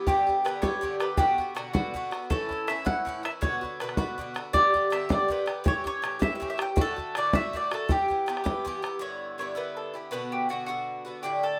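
A woody, double-strung mandolin carries the melody up front in this dark, lively and wild Celtic folk jig, set in 6/8 at 107 BPM in E dorian. A bright, metallic Irish bouzouki picks the accompaniment through chords such as G, Bm, A7 and Em, while a damped, tight bodhran drives the rhythm until 8.9 s, leaving the strings to carry the closing phrase over Em7 and Bm. The excerpt has a rough home-demo mix with a reverberant studio ambience.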